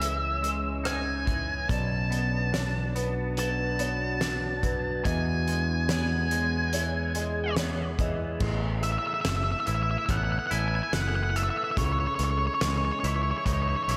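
An up-front octave-fuzz lead guitar carries a dark, distorted melody with slapback and tape echo from the outset, over a bright picked electric bass, a loose indie drum kit with a fat snare and punchy kick, twangy clean arpeggios on electric guitar, and a deep, detuned ambient pad sustaining chords in the background. This short cut from a longer post-rock piece feels hopeful and soaring, moving from C#madd9 through Bm and E to Asus2 in a big arena sound with lush hall reverb. A felt-muted upright piano adds soft, intimate arpeggios with audible action noise from 1.7 to 8.4 seconds, before the second section begins.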